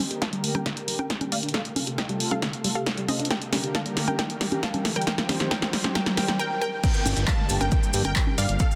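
A lush, detuned unison pluck carries the melody in this bittersweet uplifting trance excerpt, its dub echo and sidechain pumping set over a slow-blooming, warbling vintage pad, a tight sequenced arpeggio with cassette-tape colour, a punchy analog drum machine drumming through a fill of congas, handclaps, hi-hat, snare and crash, an electronic kick, and a background riser and downlifter. Through the build-up, filter sweeps shape both the pluck and the arpeggio, and the drop lands at 6.8 seconds with a phased supersaw stab carrying 12-bit sampler grit, grainy, dry maracas, and, from 7.1 seconds, a fat, thick sawtooth bass laced with ring modulation. The mix has light reverb and a dense, heavily limited modern master.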